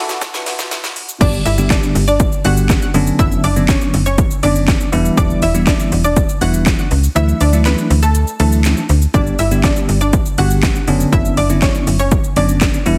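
A bell-like tine electric piano and a sweeping, resonant vintage pad open this confident, bittersweet dance-pop excerpt in B minor at 121 BPM, with an overdriven house drum kit building up through a fill before the drop at 1.2 seconds. There the pad gives way to a snappy, metallic FM slap bass and a round, detuned analog pluck melody carrying chorus and delay, while the pumping piano keeps the chords moving over the punchy kick, cracking snare and handclaps. The kick is muted at 7.2 seconds before returning, and the whole mix has a heavily compressed, radio-like sound with light reverb.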